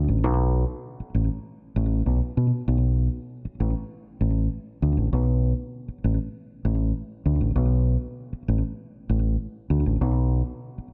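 Set in a light reverb, this hypnotic, driving funk cut from a longer piece runs at 98 BPM in a straight 4/4 in B minor, with a solo fingered electric bass, dark, round and punchy, sitting up front with a slapback echo as it moves between A1 and B2 from 0.0 to 10.8 seconds.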